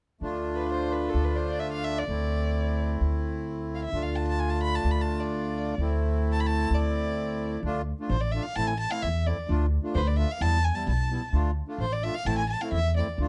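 A dark, lightly reverberant recording places three players up front in this soulful, festive klezmer fragment cut from a longer piece. A close-miked, reedy accordion with slow beating fills in the harmony beneath a single bowed violin whose rich, smooth, even tone carries vibrato from 0.6 seconds. A woody, growly upright bass is plucked on steel strings underneath, and the music shifts into a new section at 7.6 seconds.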